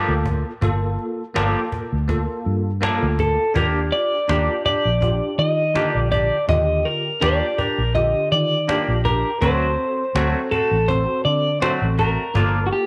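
The excerpt opens on a bell-like tine electric piano with ensemble chorus, clean picked guitar stabs bathed in spring reverb, and a dark, round, foam-muted fingered bass sitting up front, with a woody cajon and its faint snares joining at 0.3 seconds. This is a mournful, brooding straight-eighth soul blues in G minor at 82 BPM in 4/4, with a light swing on the sixteenths. At 3.2 seconds a slightly broken-up, compressed lead guitar enters with the melody, fingered and twangy, standing out front in the mix. The harmony moves from Gm7 to Ebmaj7, settles there for a long stretch, then turns to D7 before returning to Gm7. The bright, clean guitar stabs and bell-like piano contrast with the amped bass and the cajon's live-room acoustic sound, all set in a light reverb, and the passage is cut from a longer piece.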